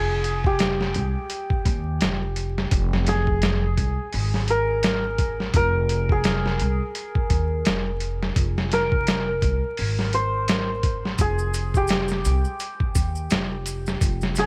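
Trip hop with a smoky, brooding mood, cut from a longer piece and resting on a single F minor chord with a swung sixteenth-note feel under vinyl crackle and small room ambience. A shimmering, hammered santur carries the melody through vintage 12-bit sampler grit and dub echo, over a woody, dark pizzicato upright bass and a muffled, pitched-down sampler-style drum kit with a thumpy kick, medium-tuned snare and hi-hat, re-recorded in a small room. At 11.2 seconds, quiet saturated maracas and a group handclap join in.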